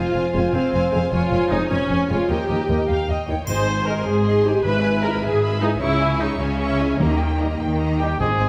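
A 6/8 pulse drives this soaring, triumphant stretch of heroic adventure film score, cut from a longer piece, with a lush violin section singing the high melody over a darker, woody second violin line, an up-front viola section, expressive cellos and smooth double basses, while a very quiet, ringing harp spins arpeggios beneath. Mellow French horns hold tight sustained chords, and at 3.5 seconds hard-mallet timpani and a bright, dry triangle join in. A clear solo trumpet cuts in with stabs at 8.0 seconds, and a wet scoring-stage reverb surrounds the orchestra.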